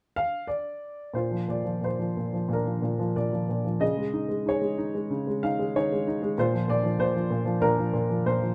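A dark, worn grand piano sits up front from 0.2 s in this relaxed, intimate fragment of lyrical classical solo piano, its boxy tone, short sustain and audible action noise caught in a modest booth ambience as the freely flowing rubato phrasing moves from Bbadd9 to Dbsus2 and back to Bbadd9 in 4/4.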